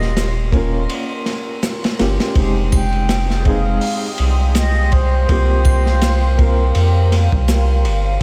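A mellow, distant flute with tape echo opens this brooding, smoky trip hop excerpt at 82 BPM over a felt-muted upright piano with tremolo, a round, deep analog bass, a crunchy, gritty breakbeat kit with dark cymbals up front, a reversed, dreamy swelling texture and a faint egg shaker and triangle, while a moody, detuned ambient pad enters at 2.9 seconds as the chords move from Eb7 through Fm9 to C7sus4.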